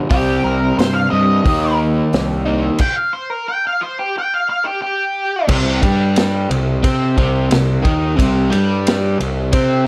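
Light reverb and a small-room sound give this short cut from a longer piece a close, up-front feel. It's heavy, gritty blues rock in the power-trio mold with a southern rock edge, moving at 89 BPM in a straight 4/4 in C minor. A bright, double-tracked, crunchy overdriven guitar carries the riff throughout, colored by harmonic tremolo, while a picked electric bass with a warm, direct-and-amped overdriven growl holds down the low end. A vintage acoustic kit keeps time with a tight kick, a medium-tuned snare, hi-hat, ride, crash, dark cymbals and a rolled-off top. An octave-fuzz lead guitar with a dark, distorted tone sings a melody over the opening power-chord section, which breaks into a stop from 2.8 to 5.5 seconds. At 5.5 seconds the lead drops out and the band settles onto a C minor chord for the second section.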